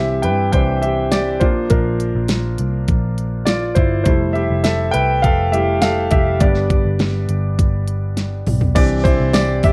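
A clear, intimate concert grand piano carries this anthemic, hopeful piano-driven pop excerpt, up front with audible action noise, deep bass, long sustain and a plate reverb over chords moving from Cadd9 through Bb, Fmaj7 and G. Beneath it, a dark, round, foam-muted picked electric bass and a layered, produced pop kit with a knocking kick, fat snare and crisp hats hold a straight groove, with a drum fill at 8.2 seconds and a very quiet, jingly tambourine at 9.3 seconds. The whole recording sits in light reverb with a worn cassette-tape character and warbly pitch drift.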